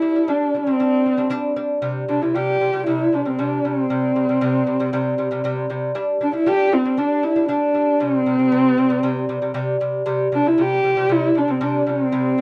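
Proud and vast, this Mongolian folk piece moves at a straight 117 BPM in 4/4, in C gong mode and tuned slightly flat to A4 = 437 Hz. A dark horsehead fiddle carries the melody between C4 and G4 with a husky, woody bowed tone, vibrato and sliding portamento. A delicate fingerpicked lute with double nylon strings spins arpeggios beneath it over G5 and C5 chords. Both play up front throughout the 12.4-second cut in a dry, close 1970s-style studio sound.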